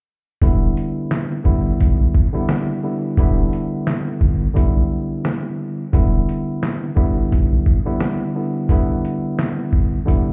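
Boom-bap hip-hop at 87 BPM in E minor, gritty and tough, sitting on a single Em7 chord with a light 16th-note swing. A worn, slightly out-of-tune tine electric piano, lightly overdriven through a combo amp with a cassette-tape character, sits up front beside a compressed, pitched-down sampler-style drum kit with a thumpy kick, medium-tuned snare, hi-hat and handclaps. A deep, round dub sub bass holds the low end until 7.6 seconds, and the whole excerpt sounds muffled, as if heard through a wall from inside a club.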